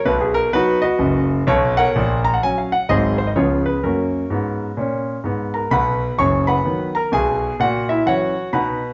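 Swinging and exuberant, this brief stride piano fragment from a longer piece moves at 127 BPM in 4/4 with a 62% swing on the eighth notes, tuned slightly flat of concert pitch at A4 = 437 Hz. A solo concert grand carries everything, clear and polished with a deep bass and short sustain, spanning F#1 to C#6 as it runs through chords such as G#7 and C#7 in F# major before shifting to B major at 5.7 s. The piano sits present and up front inside a wet club reverb, its top end softened with nothing above 7.5 kHz.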